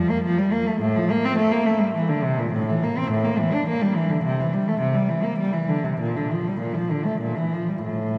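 A classical, baroque-style suite movement for unaccompanied cello, this short excerpt cut from a longer piece moves in 3/4 at roughly 94-107 BPM with a supple, rubato feel and a solemn, introspective mood. A single bowed cello plays alone up front across its full 8.2 seconds, ranging from A2 to D4 with a rich tone, soft attacks, vibrato and expressive portamento. The dark production sets the instrument in a wet church reverb with a 2.7-second decay.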